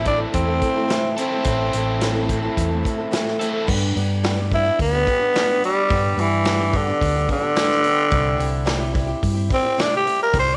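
A straight 4/4 pulse at 108 BPM drives this warm, nostalgic folk rock and heartland rock excerpt in G major, where a natural country drum kit with a punchy kick and medium-tuned snare sits beneath a round, dark hollow-body electric bass and a woody, boxy old ladder-braced acoustic guitar picking the accompaniment. A double-tracked overdriven electric guitar plays a riff over Am until 3.7 seconds, when the chords shift to G and then C at 8.1 seconds. From 3.7 seconds the raspy, growling tenor saxophone, up front with light vibrato, takes a gritty pop-style solo in a small, lightly reverberant room.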